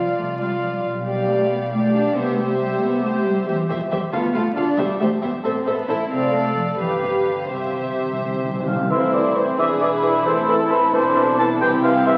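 A lilting 6/8 pulse, pushed and pulled by rubato, carries this quick, cheerful classical-period movement, cut from a longer orchestral piece. The violins share the opening, one section singing the melody with a smooth top and light vibrato while the other traces a second line. Beneath them, the violas' pure, floating accompaniment sits up front, and the cellos and dark double basses hold the bass, all bowed sul tasto with a soft, intimate attack. Timpani on medium mallets add a short fill at 7.5 seconds before the music turns to a minor-key second section at 8.9 seconds, where a mellow, distant-sounding cor anglais, entering just before the change, sings above the strings. A very quiet flute with a crisp attack, a present clarinet, a dark bassoon in the background and a tight French horn section holding sustained chords join the cor anglais in this section. The whole sounds as if played from a very old 78 rpm record, with crackle and the lingering reverb of a scoring stage.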